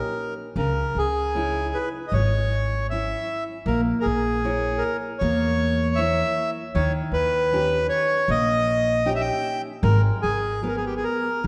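A fado-style ballad, mournful and longing, in a rubato 4/4 around 77 BPM, cut from a longer piece. A reedy, mid-forward accordion carries the melody up front, while a fingerpicked nylon-string guitar with a full-bodied, deep classical tone and audible finger squeak supplies the accompaniment; a woody, thumpy pizzicato upright bass with steel strings enters at 0.6 s. The harmony moves from D#7 through C#madd9 and A#dim back to D#7 before settling on G#madd9, all bathed in the long, wet reverb of a concert hall.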